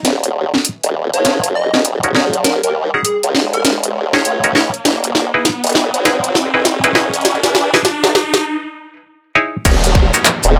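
A swung 16th-note groove at 100 BPM in 4/4 drives this playful, swaggering glitch hop fragment in Eb phrygian, cut from a longer piece. An overdriven drum-and-bass kit sits up front with a cracking snare, bright hats, handclaps and crash, running a fill through a build-up while a riser climbs until 8.5 seconds, then gives way to a break. A formant-sweep wobble bass anchors the low end, detuned and chorused with overdrive, while a muted, twangy clav plays stabs through a combo amp, pumping against the sidechain, echoing with digital delay and steadily filtered across the build. From 1.1 to 4.7 seconds a catchy, punchy square-wave unison lead carries the melody with phaser, tape colour and delay, as the chords move from Ebm7 to Emaj7 at 4.9 seconds. At 9.7 seconds the harmony returns to Ebm7 and a tight, overdriven electronic kick lands alongside a grainy cabasa in the background. Swells and downlifters sound throughout, all set in a moderate studio reverb.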